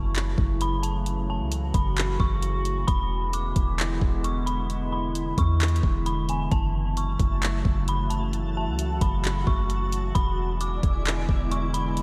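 Atmospheric cloud-rap hip hop in F# minor at 132 BPM with a half-time feel, this ethereal, spacious excerpt pairs an eerie, detuned synth bell melody drenched in chorus and diffuse ambient delay with sustained glassy FM pad chords that pump under sidechain, a deep, round 808-style bass and an up-front R&B drum kit of knocking kick, warm hi-hat and handclaps entering at 0.2 seconds, while a twinkling granular texture with octave-up shimmer joins at 7.1 seconds over a F#m7 to E7 progression.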